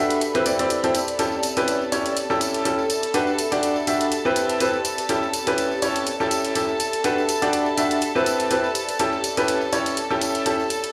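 Euphoric and joyful, this piano house excerpt moves at 123 BPM with a light 16th-note swing, cycling through Cmaj7, A7 and Gmaj7 chords. A bright, brilliant grand piano carries the riff up front with long sustain and an analog delay, over soft-attack bowed strings holding floating sustained chords and a blurred, evolving granular pad in the background. Tape-warm electronic hi-hats and a tambourine in the background keep the groove moving, all set in a dry, gritty hardware recording with plate reverb and small room ambience.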